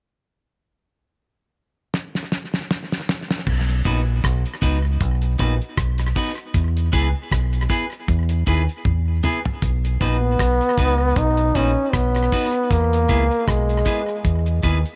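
Roots reggae in B major at a relaxed 78 BPM, this laid-back, warm excerpt moves in 4/4 with a gentle swing on the sixteenths. A damped 70s drum kit enters at 1.9 seconds with a fill, its dry, dark sound built on a fat snare, tight kick, rim clicks, hi-hat, toms and crash, with a rolled-off top and a touch of tape echo. At 3.5 seconds a deep dub fingered electric bass arrives up front, round and punchy, as the chords settle into an alternation of B and E. A clean electric guitar joins just after, bright and twangy with a picked attack and its own tape echo. From 10.0 seconds a clear trombone takes the solo melody up front, its vibrato and smooth top carried by tape echo. Light reverb and a small room ambience frame the whole mix.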